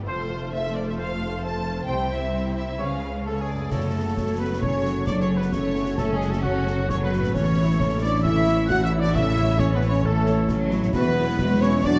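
Adventurous and determined, this heroic adventure film score excerpt moves at 133 BPM in 4/4, opening with lush, vibrato-rich string sections, a very quiet ringing harp in arpeggios, mellow French horn chords, and brief mellow trumpet stabs that fall away by 3.0 s. A clear oboe and pure flute add second lines from 3.3 s, and at 3.7 s the music settles into F# minor as a mellow tuba deepens the rich cello and double bass foundation and snare, bright clash cymbals and concert bass drum enter. A moderate scoring stage reverb gives the dark production its sense of space, with the horns and low strings carrying the most weight.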